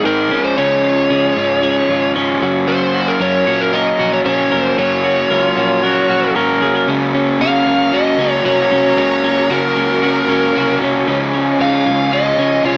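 Indie pop at 114 BPM with a breezy, nostalgic mood, this short excerpt pairs a fuzzy, compressed lead guitar melody with crunchy overdriven rhythm guitar, warm clean twelve-string arpeggios and a dark, round foam-muted bass, while a breathy, whispered trumpet line appears briefly from 5.3 to 6.9 seconds and a lush bowed string section holds sustained chords in the background from 6.9 seconds, all colored by spring reverb and a small-speaker cassette home-recording sound.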